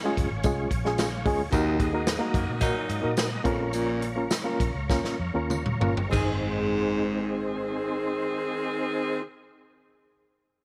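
Uptempo 1960s-style soul in Ab mixolydian, uplifting in a straight 4/4 at 94-111 BPM, this short cut from a longer piece slows down between 1.5 and 6.1 seconds before a drum fill leads into an Ab chord. A barky, lightly overdriven reed electric piano with fast tremolo adds a fill near the start over a clean tonewheel organ with slow rotary speaker and key click, a round, foam-muted electric bass, a punchy, airy big-band drum kit with dark cymbals, and a jingly tambourine in the background. From 1.5 seconds a warm baritone saxophone with scooped notes carries the riff up front, joined by a clear, close-miked saxophone section on a second line, set in a small room.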